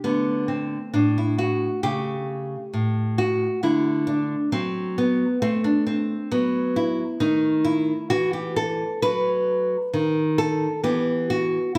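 A solo nylon-string guitar, fingerpicked with a warm, small, up-front tone on fresh strings, carries this flowing, introspective baroque-style classical dance at 67 BPM in 4/4, played with rubato across a range from A2 to B4. The 11.8-second passage, lifted from a longer piece, moves from D5 through A7/C# and D to B7/D# before landing on E5 at 10.8 seconds. A moderate recital-hall reverb gives the guitar a gentle sense of space.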